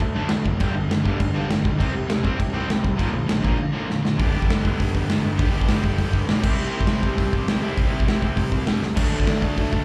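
Punk rock at 201 BPM in a straight 4/4, rebellious and energetic, heard as a live club gig through the venue's PA with small-room ambience and club reverb, cut from a longer piece. A distorted, compressed electric guitar with slapback echo drives the riff throughout over a growly fuzz bass, while a second overdriven guitar sits in the background, dropping out at 4.2 seconds and returning at 9.0 seconds. The chords move from D through G5, C5 and Bb to G and C before landing back on D. Up front, a big, dark acoustic kit with a punchy kick and medium-tuned snare pounds along, with fills leading into the second section at 4.2 seconds and again near 8.8 seconds.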